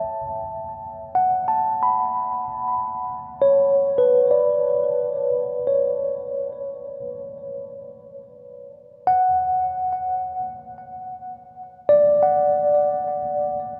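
A huge, wet reverb with a long 9.2-second tail surrounds this short ambient fragment, cut from a longer piece. The only instrument is a mellow tine electric piano, clean and direct, sitting up front in the mix with delay on its notes. It plays alone across the full 13.8 seconds, staying in a high register from B4 to B5. A single Bm9 chord colours the opening, and from 9.1 seconds the harmony drops away, leaving the piano's tones drifting into the reverberant space. The mood is serene and peaceful, with a slow, straight pulse in four.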